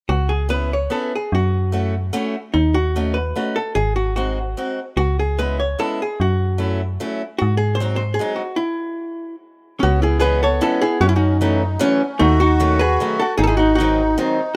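Musette waltz in C# minor at 149 BPM, whirling and nostalgic, cut from a longer piece: a dark, clean, hollow-body electric archtop carries the melody up front, over boxy picked acoustic archtop accompaniment and a metallic, digital FM bass with a fast attack and mellow decay, all moving through C#m7, F#m7, D#m7b5 and G#7. The band halts for a stop from 8.6 to 9.8 seconds, then the progression restarts and a reedy, sweet accordion with light tremolo tuning enters at 9.8 seconds as a second line. The sound is a rough home demo with light reverb and small-room ambience.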